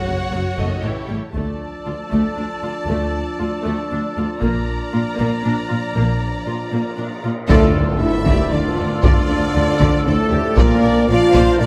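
Epic orchestral film score in 3/4, heroic and dark, heard in a short cut from a longer piece: a lush, vibrato-rich string body of violins carrying a soft-attack melody over a focused second line, intense violas, smooth cellos and expressive double basses sits beside mellow French horns in the background, while a taiko ensemble struck with hard sticks drives in from 0.6 seconds and punchy woodwinds add sustained chords from 1.3 seconds. Dark cymbals and tam-tam rise quietly in the middle, and at 7.5 seconds a distant, roomy trombone section and a brief stroke of round soft-mallet timpani on D mark an impact as the harmony returns to D minor, with a huge, bright sub drop following a moment later. The ensemble sits in a moderate scoring-stage reverb that gives the climax a grand sense of space.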